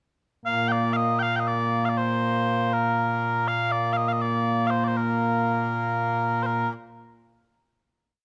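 Mellow small bagpipes open at 0.5 s, playing alone and up front with a sweet, continuous tone and an ornamented modal melody in Scottish traditional pipe style. It's a short, proud and ceremonial piece in 6/8 at 80 BPM (dotted quarters), in Bb major and tuned to A4 = 438 Hz, ranging from Bb2 to G5. Close, detailed miking sits within a moderate recital-hall reverb, and the tune ends on a final note at 6.5 s.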